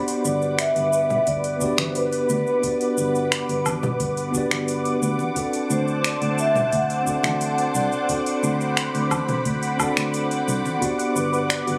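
Sunset chillout in G major at 88 BPM, smooth and warm, where a mellow soft-mallet vibraphone carries the melody through delay until 8.4 seconds over a tremolo-laden tine electric piano, a lush detuned unison pad with chorus and phaser, a dark, round fingered electric bass, a produced R&B kit of finger snaps, metallic hats, shaker and woodblock, bright dry congas, and a deep tape-tinged electronic kick in the background, while a soft round pluck adds chorused arpeggios from 10.8 seconds, all moving from Gmaj7 to D7 and back in a lightly reverberant phone recording of a studio room that is cut from a longer piece.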